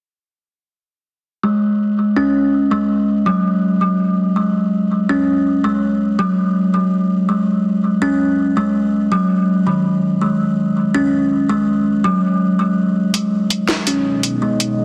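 A woody, ringing kalimba plays soft arpeggios up front through a low-pass filter and delay from 1.4 seconds, over F#sus2 and later G#m harmony in this dark, heavy half-time drum and bass excerpt at 164 BPM. Near the end, a small-room electronic kit with a cracking snare and metallic, filtered hats arrives at 13.1 seconds, and a deep, moody detuned sawtooth pad with chorus joins at 13.9 seconds. A lush hall reverb and a dense, heavily limited modern master frame the sound.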